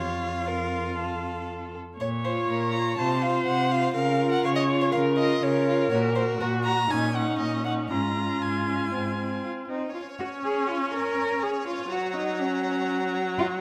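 Heard through close, detailed microphones on a scoring stage with a moderate reverb tail of 1.6 s, this short cut from a longer piece is a quick, stormy classical-period movement for string quartet at 121 BPM in a straight 4/4. The first violin carries the melody with a warm, expressive tone, soft attacks, vibrato and portamento, while the second violin adds a clear, focused second line that sits a little further back. Up front, the rich viola supplies an expressive accompaniment with its own vibrato and portamento, and the focused cello anchors the bass. The music opens dramatically in Bb minor, then turns toward Db major at 5.9 s. A new section arrives at 9.9 s on a Db chord before moving to Gb, with all four bowed players sounding together throughout.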